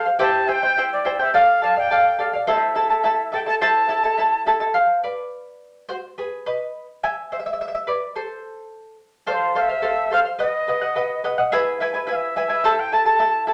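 Up front, a fingerpicked acoustic charango with shimmering double strings carries this festive yet melancholic Andean folk excerpt in A minor, moving in a straight 2/4 at 106 BPM through a wet, club-sized reverb. A reedy cane quena sings the melody with breathy chiff, crisp attacks and vibrato, then falls silent while the charango takes a solo from 4.8 to 9.3 seconds. The quena returns at 9.3 seconds as the harmony passes through F, B and E before settling on A minor.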